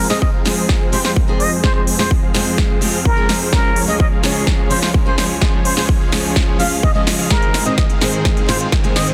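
Dense, heavily limited and lightly reverberant, this triumphant, uplifting festival progressive house excerpt at 127 BPM is one long build-up over a drum fill, with a breathy plunger-muted trumpet melody trailing dub echo, huge detuned supersaw chords pumping under a filter sweep, a bright fingerpicked steel-string acoustic guitar, a very quiet nasal unison pad, a punchy up-front electronic kick, crisp hats and snare from a big-room dance kit, and a faint riser entering at 8.8 seconds as the chords move from F minor to D-flat to A-flat.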